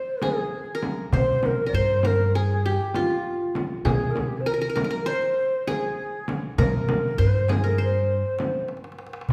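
A breathy, end-blown ney carries the melody from the first moment, its tongued notes shaded with vibrato, while a plectrum-plucked qanun with bright-edged triple strings plays a second line. This Turkish makam ensemble piece, in 9/8, feels soulful and hypnotic. A clay-shell darbuka sits in the background alongside a deep, vintage-sounding frame drum played with soft hands. A woody pizzicato upright bass enters at 1.1 s and stands up front in the mix. The whole short cut from a longer performance rings in the lush reverb of a recital hall, and a drum fill rounds it off from 8.7 s.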